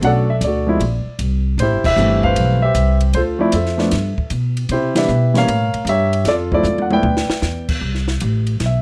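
An up-front grand piano carries the melody in this relaxed, warm swung jazz piano trio excerpt in C major at 154 BPM, supported by a woody, pizzicato upright bass and a dry, airy cocktail drum kit with dark cymbals, a high-tuned snare and a punchy kick, all in light reverb, with band accents at 1.8 and 4.9 seconds and a drum fill at 6.6 seconds as the chords move from Bm7 through Cmaj7 and A7b9 to settle on C5.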